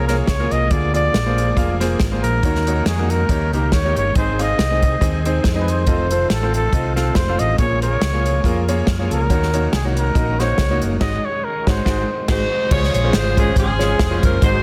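Swung eighths drive this soulful, uplifting uptempo gospel cut, where a breathy, close-miked trumpet sings an intimate melody until 12.3 seconds over brilliant grand piano, a very quiet, lightly overdriven tonewheel organ through a rotary speaker, round, punchy hollow-body electric bass and an up-front big-band drum kit with dark cymbals; a band accent at 11.0 seconds then hands the melody to a vibrato-laden saxophone section, inside a dense, heavily limited small-room sound.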